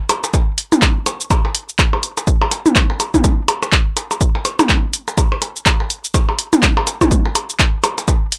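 Dry and gritty, this hardware-recorded techno clip sits at 124 BPM in 4/4 with a 59% swing on the sixteenths, carrying a clinical, cool mood through a single section lasting about 8.4 seconds, cut from a longer piece. A punchy analog drum machine sits up front with handclaps, hi-hat and shaker from 0.1 s, joined by a punchy electronic kick drum at 0.3 s. Electronic percussion blips and toms, re-recorded in a small room, also sit forward in the mix.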